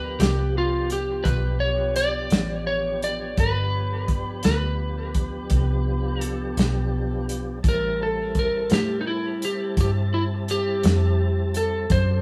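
Recorded live in a small room with moderate reverb, this soulful, rollicking slow blues excerpt in 12/8 at 56 BPM in G mixolydian, tuned to A4 = 444 Hz, features a slightly broken-up electric slide guitar played with fingerpicks carrying the melody through analog delay, a smooth tonewheel organ with key click, chorus vibrato and a slow rotary speaker holding sustained chords, a dark, foam-muted, punchy fingered electric bass, and a dry soul drum kit with a tight kick and rolled-off top entering at 0.2 s, as the harmony moves from G7 to Am7 at 7.6 s.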